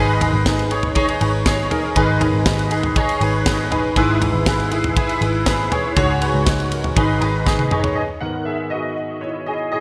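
Driving and earnest, this piano-driven pop excerpt moves in a straight 4/4 under a bright, 1980s-style digital sheen and a lush hall reverb. A clear concert grand piano carries the accompaniment up front, its intimate, present tone showing audible action noise, deep bass and long sustain, all thickened by an ensemble chorus. Beneath it, a vintage muted picked electric bass gives a dark, round, foam-muted, amped low end. A modern studio drum kit adds a punchy kick, a medium-tuned snare, ride cymbal and toms, sounding airy and polished in a small room with gated reverb, and it plays a fill from 7.5 to 8.0 seconds. From 8.0 seconds the grand piano carries on alone until 9.8 seconds, closing on a G#madd9 chord.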